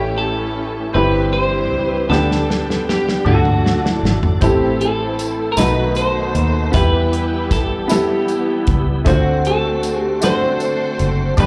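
Reverent and uplifting, this slow gospel passage in 6/8, heard as a live club set through the venue's PA, pairs a twangy, picked electric guitar melody with a lush, distant string section, both carrying slapback echo like the brilliant, woody upright piano beneath them, while a tonewheel organ holds background chords through a fast rotary speaker with chorus vibrato and key click, a round, foam-muted fingered bass sits up front, a soul drum kit with a tight kick and rolled-off top enters on a fill at 2.1 seconds, and a jingly tambourine joins at 4.4 seconds.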